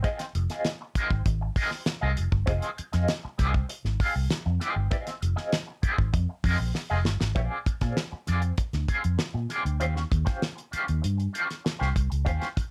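Cool and funky, this dry, cut-from-a-longer-piece funk groove pairs a bright, twangy envelope-filtered electric guitar with wah and tremolo, a round, foam-muted fingered electric bass entering at 0.3 s, and a damped 70s drum kit with a fat snare and tight kick whose fill at 6.8 s leads the harmony from Fm7 to Bb9 and then Eb13.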